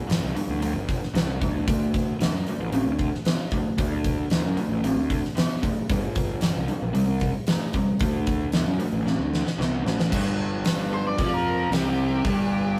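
This brooding, smoky blues rock power trio excerpt leans into southern rock, moving at 114 BPM in a straight 4/4 and tuned slightly sharp to A4 = 444 Hz. A crunchy, double-tracked overdriven guitar carries the picked riff over G5, D7(no3) and C5 chords, while a fuzz-soaked electric bass, both direct and amped, sits up front and thickens the low end. The huge arena drum kit has a hall-like acoustic presence, with bright cymbals, a fat snare and a punchy kick, and it plays a fill from 9.1 s. At 10.1 s the chords drop away for a solo section, and an octave-fuzz lead guitar enters at 10.9 s with a distorted, picked melody in a higher register. Light reverb and a rough rehearsal-room sound give the whole trio a gritty, close-up feel.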